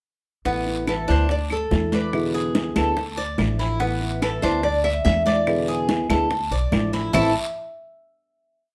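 In a moderately reverberant studio, this short, danceable and sultry Cuban son in the guajira style moves at 144 BPM over a montuno vamp: a metallic, up-front tres plays an arpeggiated guajeo on double strings, a dark, thumpy gut-string upright bass plays a pizzicato tumbao that anticipates the chords, and a thumb-plucked classical nylon-string guitar strums with muted slaps. From 0.9 seconds a fingerpicked nylon-string guitar adds song-like motifs with audible finger squeak, and woody claves join with a two-bar time line, while bright congas with slaps and open strokes, round low-tuned bongos in steady eighths with hand bell, and a raspy guiro fill out the percussion before the piece settles on a final chord at 7.1 seconds.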